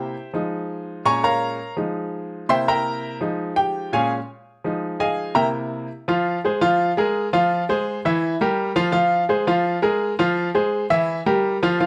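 A straight 4/4 pulse at 168 BPM drives this danceable, passionate Latin piece in F minor, cut from a longer work. A solo upright piano carries everything from 0.0 to 11.9 seconds, ranging from Bb2 up to Db6. Its tone is brilliant and woody, with a short sustain that keeps each chord crisp, and it sits up front under a light reverb. The first half cycles through Fm7, Bbm7 and C7. From 6.1 seconds the harmony shifts to a starker pattern of Fm, Bb5 and Edim.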